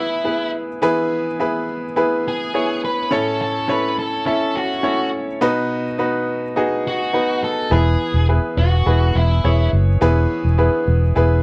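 A dry, close 1970s-style studio sound with light reverb frames this hopeful, anthemic pop excerpt in E major at 104 BPM, moving from E to A to B and back to E. A bright, brilliant grand piano with audible action noise carries the accompaniment throughout, while a dark, fuzz-distorted lead guitar with slapback echo picks out the melody until 9.7 seconds. At 7.7 seconds a round, punchy, foam-muted electric bass enters low and up front.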